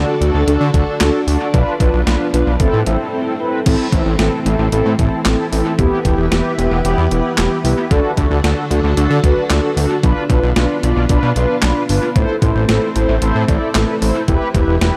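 A mellow, dark synth brass with chorus and dub echo opens alongside a lush, vintage string machine pad and a fat, detuned analog sawtooth bass, setting a driving, nocturnal synth-pop groove in A minor at 113 BPM. From 0.2 seconds a clean 12-bit digital drum machine joins up front, its thumpy kick, medium-tuned snare, handclaps, hi-hat and crash overdriven and thrown into dub echo, with a short break at 3.1 seconds before the progression returns through Am, Em, D and Bdim. The string machine sits in the background, slow-attack and mellow, while the brass and bass carry filter sweeps in an echo-heavy mix with light reverb, cut from a longer piece.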